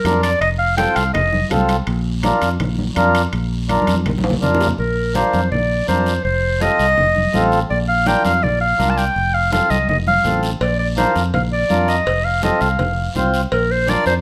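Joyful and danceable, this cumbia in Bb major moves at a brisk 165 BPM in a straight 4/4, cut from a longer piece. A clear, classical-style clarinet carries the melody up front, sounding briefly at the start and then returning at 4.8 seconds to lead through to the end. Beneath it, a reedy, mellow accordion with a boxy, full tone holds the accompaniment, while a round, fingered electric bass sits close and present at the bottom. The percussion blends a raspy, dry guiro, bright, compressed congas set back in the mix, and ringing timbales and cowbell that play through the opening and return at 10.6 seconds, with a drum fill arriving at 3.7 seconds. The harmony moves simply between F7, F and Bb, and a moderate large-studio reverb gives the whole a lively sense of space.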